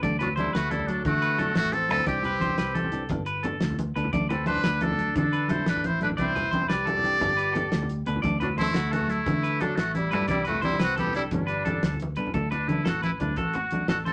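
Carefree and joyful, this short highlife guitar band passage moves at 117 BPM in a straight 12/8, settled in D mixolydian and cycling through D, Cadd9 and Gadd9. A muted trumpet carries the melody up front from 0.2 seconds, its metal mute giving a brilliant, buzzy, thin tone with light vibrato in a jazz style, while a breathy alto saxophone plays a second line beneath it with soft attacks, scooped notes and vibrato until 12.0 seconds. Two clean electric guitars fill out the texture: one picked, bright and twangy, playing an accompaniment that stops at 13.8 seconds, and another fingered, warm and compressed, playing arpeggios. A punchy, foam-muted fingered bass anchors the low end, and a damped 70s drum kit of hi-hat, kick and snare sounds dry, with a fat snare, tight kick and rolled-off top. Low-tuned, ringing congas struck with hard hands sit close in the mix, and a moderate studio reverb lends the ensemble a sense of room before the excerpt moves into a new section at 12.3 seconds.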